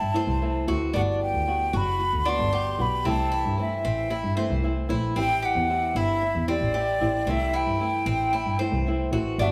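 A straight 4/4 pulse at 114 BPM sets a relaxed, sunny Latin groove in this short cut from a longer piece, moving between C6, Gmaj7 and Am7 chords. A breathy, hollow, close-miked silver concert flute carries the melody while a bowed double bass with an airy, intimate tone and light vibrato holds the low end up front, and a Cuban tres spins metallic, double-strung arpeggios. A fingerpicked flamenco guitar joins at 0.1 seconds with audible finger squeak, all set in a moderate large-studio reverb.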